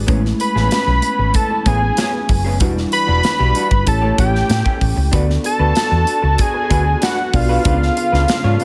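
Nocturnal and bittersweet, this polished 1980s jazz-funk pop excerpt moves at a straight 95 BPM in 4/4, with a fat, warbling, detuned analog lead carrying the melody up front over a round, hollow-body fingered bass, a punchy modern drum kit bathed in gated reverb, mellow tine electric piano with subtle chorus, a slightly broken-up lo-fi electric guitar riff tucked in the background, and very quiet, lush bowed strings holding sustained chords, all moving from Amaj9 through Em9, A7 and D6 to a tense C#7b9 at 7.7 seconds.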